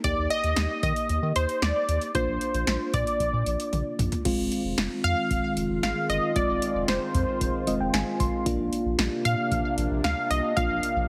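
A punchy, detuned sawtooth polysynth carries the melody up front with chorus and delay, backed by a mellow, warbling FM electric piano that adds a fill around 7.4 seconds, a round, nasal analog bass, and a tape-warm electro drum machine with a deep kick, punchy snare and metallic hats. This bright, upbeat synth-pop excerpt moves at 114 BPM in a straight 4/4 through Eb, Bbadd9 and Fm7, with a drum fill at 3.7 seconds leading into a new section where an evolving, wave-folded resonant pad enters at 4.2 seconds, treated with chorus and phaser. The mix sits in a lush hall reverb with a heavily compressed, radio-like sound.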